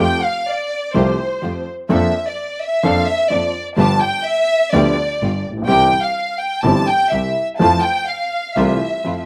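This dry, open-air recording carries barely any reverb, with a short slapback echo trailing the violins, piano and background strings. It is a melancholic, dramatic tango in four, played with a rubato feel and cut from a longer piece. A lush symphonic violin section sits up front and takes a featured solo across the full 9.3 seconds, its bowed tone focused and rich with vibrato. Beneath it, a concert grand piano gives warm, deep-bass accompaniment, while a studio string section adds smooth, even stabs from the background. A single bowed double bass anchors the low end with an earthy, clear tone and light vibrato. The harmony moves from Fadd9 through Bbmaj7/F, G7 and C before settling on Fmaj7.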